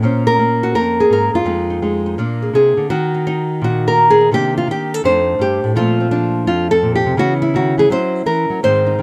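A swung eighth-note feel in 4/4 carries this late-night solo jazz passage, cut from a longer piece and played on a single fingerpicked nylon-string guitar. The guitar sits up front with fresh strings and a small acoustic body, caught by close, detailed microphones in light reverb as it moves through rich chords such as Bbm9, Cm9, F13 and Bbmaj9. A brief opening phrase gives way at 2.9 seconds to a longer second section that runs to the close at 9.0 seconds.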